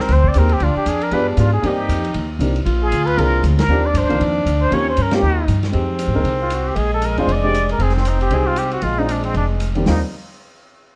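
A plunger-muted trumpet carries the melody with wah-wah inflections, light vibrato and scooped notes over a breathy, whispered tenor saxophone second line, a woody, thumpy pizzicato upright bass up front, a warm baby grand piano accompanying, and a vintage drum kit with dark cymbals and a punchy kick, all swinging at 234 BPM in Eb major in this warm small-group swing and bop excerpt, with band accents at 3.6 and 5.1 seconds.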